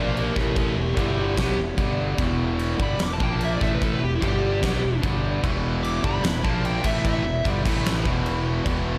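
An aggressive, menacing hard rock excerpt opens on a dark, smooth overdriven lead guitar solo over two bright, picked rhythm guitars playing a riff around Em, G5, A5 and A#5 power chords, a growly fuzz bass and a huge, up-front arena drum kit with a fat snare and punchy kick, before a third double-tracked guitar and a very quiet tonewheel organ with key click and slow rotary vibrato join at 5.4 seconds, all in a lush hall reverb.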